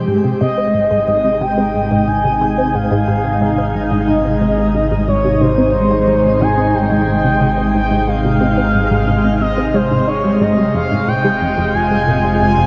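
A swirling, phased analog pad sustains chords from the start of this mysterious, cosmic piece of ambient, sequencer-driven space music at 90 BPM in a straight 4/4. Beneath it, a fat, wave-folded analog bass holds the low end, while a juicy, squelchy blip pluck with a resonant moving notch, phaser and tape echo repeats a riff. A filter sweep runs through the synth arpeggio sound for the whole passage. At 0.4 seconds a smooth, expressive portamento lead with vibrato and gentle chorus enters up front, carrying a mellow melody high above the rest. The harmony rests on Ab before shifting to Fm at 10.7 seconds. Everything sits in a wet shimmer reverb with a long 7.9-second tail and a soft top end, and the piece is cut from a longer work.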